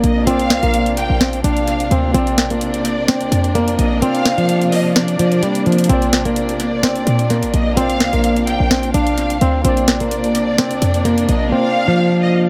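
Hip hop with a trap lean at 128 BPM in a half-time feel, this dreamy, wistful piece in Bb major opens on a Bbadd9 chord. A thumb-plucked flamenco guitar carries the melody up front, its finger squeaks softened by a low-pass filter and tape echo, while a distant, expressive violin section traces a lush second line above it. Warbling, detuned lo-fi synth keys with chorus and a mellow, warm symphonic string section fill the background, and a punchy, tight 808-style bass and a trap kit of sharp snare and bright hats drive the groove until the drums drop out at 11.5 s in this echo-heavy, small-room mix.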